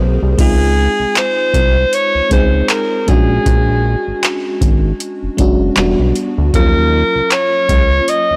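The recording sounds blown-out and overdriven, with little reverb, giving this short contemporary R&B cut from a longer piece a dry, saturated surface beneath its smooth, dreamy mood. At 78 BPM in 4/4 with a swung sixteenth-note feel in Db major, an FM electric piano layered with a soft pad opens the texture, lush and detuned, its chords shimmering through chorus and tremolo alongside a fat, sawtooth analog bass that is thick and mellow with a ring-modulated edge. At 0.4 seconds a booming analog drum machine arrives up front with a deep kick, metallic hi-hats, handclaps and crash cymbal, its overdriven tone adding grit. A vintage-toned alto saxophone enters at the same moment as the soloist, warm with light vibrato and jazz phrasing, its line trailed by digital delay. The harmony moves from Dbmaj9 to Bb7alt, then slips through Em9 to Ebm9 near the close.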